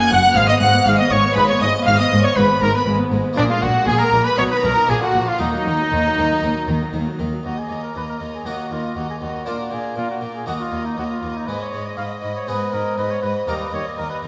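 Dramatic and stormy, this short cut from a baroque-style concerto movement in straight 4/4 sets a mellow, vintage-toned solo trumpet on the melody, with a focused chamber violin section also carrying the melody an octave higher, while a second, close and expressive violin section traces a line beneath. A brilliant, plucked harpsichord and a smooth, distant viola section fill in the accompaniment over a lush symphonic cello section on the bass, joined by a bowed double bass section that drops out at 7.3 s as the music moves into its second part. A generous scoring-stage reverb gives the ensemble a rich sense of space as minor-key harmonies drive toward a closing major chord.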